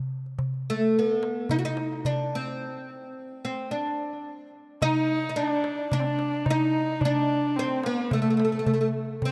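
A close, dry darbuka with a clay shell and natural skin opens at 0.3 s. It is joined almost at once by an up-front fretless oud, whose woody, plectrum-plucked double strings carry the melody through an analog delay in a warm, stately Turkish makam piece in D hicaz, set at 109 BPM in a straight 4/4. After a stop from 2.6 s, a single bowed kamancheh enters at 4.8 s as an intimate second line, with an airy bow, soft attack, light vibrato and portamento, while a long plate reverb soaks the mix in a dreamy haze.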